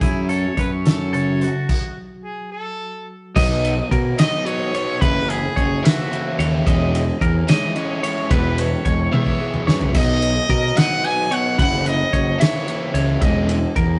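A distant, clear trumpet carries a lightly vibrato pop-style melody from the first moment over twangy, compressed twelve-string electric guitars (one shimmering with tremolo chords, the other picking arpeggios), a growly, fuzz-overdriven fingered bass and a loose indie kit with a fat snare, punchy kick and dark cymbals in this playful, bright fragment of math rock and midwest emo in 6/8 at 73 BPM in B major; after a stop at 1.7 seconds, a double-tracked, scooped overdriven guitar riff takes over from the tremolo guitar at 3.4 seconds as the chords move through Bmaj9, F#7sus4 and C#madd9/E, and a drum fill at 9.1 seconds marks the way, all captured with a rough rehearsal-room sound and stone-room reverb.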